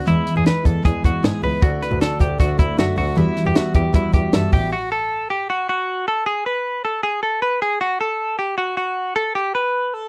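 A picked steel-string acoustic guitar, dark and full-bodied with an audible finger squeak, opens alongside a bright, twangy clean electric guitar playing arpeggios, its compressed, scooped tone recorded direct and treated with subtle chorus and slapback echo. This is jangly indie pop at 155 BPM in a straight 4/4, with a bittersweet, restless mood, cut from a longer piece. A compact cocktail drum kit sits up front with a high-tuned snare, tight kick and hi-hat, while a bowed double bass adds a nasal, earthy low line with light vibrato and an airy bite. At 1.6 seconds, mellow analog keys join with round, detuned square and sawtooth tones, a fast attack, a filter sweep and chorus. After 4.7 seconds, the electric guitar carries on alone as the chords move from E and D toward F#m, G#m and Gadd9, all captured in a dry, close 1970s-style studio sound.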